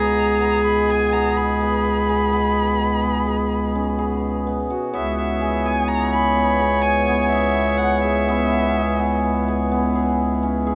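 Hypnotic and restless, this short cut from a longer contemporary chamber piece moves at 126 BPM in a straight 7/4 in C# minor, with a vibrato-laden, boxy violin carrying the melody until 9.4 seconds over a soft-attack clarinet second line, shimmering hammered dulcimer arpeggios, reedy harmonium chords breathing in the background and an up-front bass clarinet holding a low C#2, all captured by close, detailed microphones with little reverb as the harmony shifts from G#m/C# to C#m7 at 4.9 seconds.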